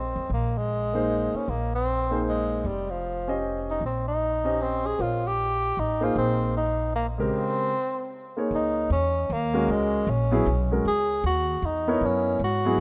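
A breathy, subtoned tenor saxophone with vibrato and scooped notes carries the solo melody up front over a woody, thumpy pizzicato upright bass, and a concert grand piano with intimate tone and audible action noise joins in accompaniment at 0.9 s in this intense, spiritual modal jazz fragment in swung 3/4, which moves from Bbm11 to Ab, pauses for a break at 7.3 s and shifts to C#m69 at 8.5 s, heard in a rough home demo mix with light reverb and small room ambience.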